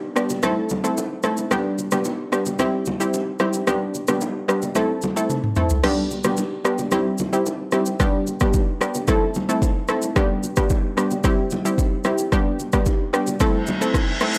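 A round, detuned analog pluck with chorus and an up-front electronic afro-pop kit with a deep kick, shaker, rim clicks and toms open this breezy, romantic afrobeats excerpt at 111 BPM in G major, joined at 0.3 s by bright, distant bongos and congas in a large room, cycling through Am, G and C with a drum fill at 5.3 s and a reverse cymbal arriving at 13.6 s, all captured in a dry, gritty recording with transformer saturation.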